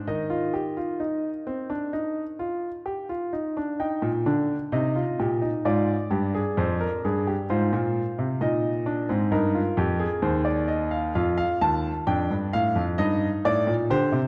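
A solo grand piano opens at 0.0 seconds with a clear, intimate tone, its action noise audible and its sound placed up front, playing a stately, joyful baroque-style three-part fugue in Eb major at 65 BPM in a straight 4/4. The part spans Eb2 to A5, and its harmony moves from Eb through Ab and back, touching an Ebmaj9#11 before settling on Eb/G. A wet concert hall reverb and a dark production colour this short passage, which is cut from a longer piece.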